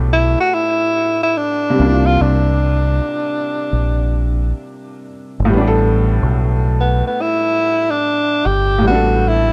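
A felt-muted upright piano, soft and intimate behind cassette tape haze and a low-pass filter, opens this nostalgic, dreamy lo-fi hip hop excerpt at 72 BPM with a lazy 16th-note swing, alongside a deep, round dub electric bass that sits dark and up front. A breathy tenor saxophone enters at 0.1 seconds and carries the solo melody in a jazz style, mellow and filtered, with vibrato, subtone and scooped notes. The chords drift from A9sus4 to C9sus4 and back, and a moderate studio reverb and a cassette tape sheen give the whole recording a faded, late-night glow.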